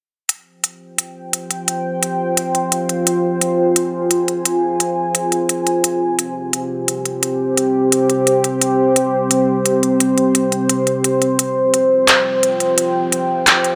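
A cavernous ambient reverb washes over this dark, cinematic slice of half-time drum and bass, lending the whole short excerpt a deep, brooding sense of space. A deep, moody pad of sawtooth and sine voices in unison, with a sub octave beneath, sustains slow-blooming chords from 1.3 s, its vintage, warbling character thickened by chorus and its own reverb. Up front beside it, an industrial electronic drum kit enters at 0.3 s with crisp hi-hats and handclaps, sounding produced and tape-tinged, set in a studio reverb. The swung sixteenths give the half-time groove a loose, rolling gait under the pad's long release. The harmony moves from F minor toward a C power chord and then an F power chord, holding the mood heavy through to 13.8 s.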